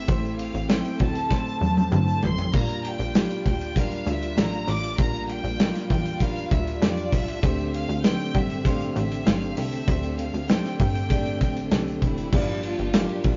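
A straight 4/4 groove at 98 BPM drives this earnest, dramatic piano-driven pop passage in G dorian, cut from a longer piece. An up-front acoustic kit with a tight kick and rolled-off top plays a fill from 1.3 to 2.5 seconds, alongside a punchy, funky analog bass with a sawtooth filter pluck and a grainy, very quiet tube shaker. A dark, vintage baby grand, a clean tonewheel organ with chorus vibrato and slow rotary speaker in the background, and an intimate bowed violin section carrying the melody with light vibrato move through Am, Gm7 and D7sus4, all in a rough rehearsal-room recording with moderate reverb and a dulled high end.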